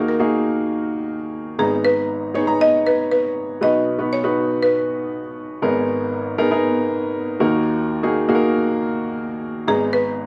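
Dramatic and bittersweet, this short pop fragment sets a buzzing marimba, struck with medium hard mallets for a bright, percussive edge, on the melody from the start until 5.3 seconds, returning briefly at 9.7 seconds. An open, up-front upright piano with long sustain carries the accompaniment throughout, moving through minor and major chords, some tinged with an added ninth. Both instruments carry a slapback echo in an outdoor recording with very little reverb.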